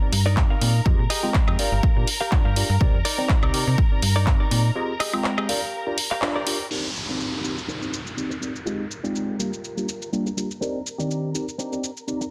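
Filtered disco house in C minor at 123 BPM, this groovy, nostalgic excerpt from a longer piece rides a swung sixteenth-note feel over a Cm9, Fm9, Gm7 progression. A worn, slightly out-of-tune tine electric piano carries the accompaniment through a phaser and vintage 12-bit sampler grit, while a clear studio string section holds lush, bowed chords with vibrato. A snappy, slap-like FM bass with a metallic attack and a punchy, tape-warm electronic kick drive the opening together until the kick drops out at 4.4 seconds and the bass at 4.7, setting up a break that runs to 6.7 seconds, with a band accent at 6.2. A layered house kit with bright hats, cabasa, handclaps, woodblock and crash plays throughout, alongside a picked, scooped, direct-recorded clean electric guitar riff. Filter sweeps shape both halves, and sidechain pumping moves the piano, strings, bass, guitar and the kit's hats, percussion and cymbals. 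In the second half an up-front electronic downlifter cuts through, all within light reverb and a dense, heavily limited modern master.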